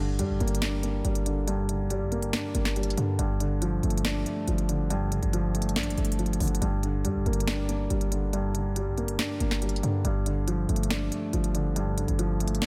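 A dark concert grand piano sits up front in this brooding trap excerpt, its mellow, boxy tone carrying deep bass and audible action noise that lend it an intimate feel as it plays accompaniment between G2 and D4. Beneath it, a hard-hitting 808-style bass delivers punchy, heavy sine lows with a noise layer, a fast attack and a decaying tail, moving between G1 and G2. A trap drum kit enters at 0.2 seconds, its electronic, produced sound built from a sharp snare and crisp hats sitting a little lower in the mix. The track moves at 140 BPM in 4/4 with a half-time feel, in G minor and tuned to A4 = 438 Hz. The harmony alternates between Gm and Dm/G, changing at 3.2, 6.6 and 10.0 seconds. The whole is wrapped in a digital ambience that deepens the dark mood.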